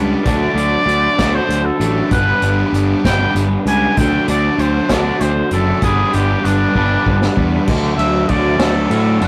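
A rough rehearsal-room recording with tube saturation and light reverb frames this carefree, upbeat indie rock excerpt in D major, moving in a straight 6/8 at 65 dotted-quarter beats per minute over an alternation of D and G chords. A clear, vintage-toned trumpet takes a solo until 7.7 seconds with light vibrato and scooped notes, over riffs from a bright, overdriven stack guitar and a hollow-bodied, overdriven semi-hollow guitar, while a growly, punchy fuzz bass sits up front. A distant, roomy acoustic drum kit played with bundle sticks, with dark cymbals and a tight kick, enters at 0.3 seconds and plays a fill from 6.8 seconds.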